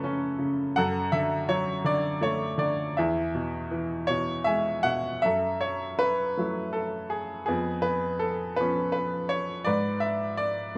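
The recording has a dark, warm production, set in a moderate recital hall reverb that gives the solo piano a gentle halo. A bright baby grand piano plays alone for the whole 10.8 seconds, its tone brilliant and natural, placed up front, and ranging from E2 to G#5. This lyrical classical fragment, cut from a longer piece, moves in a slow 6/8 at 54 beats per minute in dotted quarters, with a rubato feel that lets the phrasing breathe. The harmony drifts from F# minor through D over F# to E, before a piano fill from 4.1 to 5.2 seconds leads into the second section, where the key of F# minor settles in. From there the chords move through F#m7 and C#7 over E# to a G# diminished, leaving the mood wistful and dark. Tuned to A4 = 443 Hz, the piano's bright tone stands against the somber harmony.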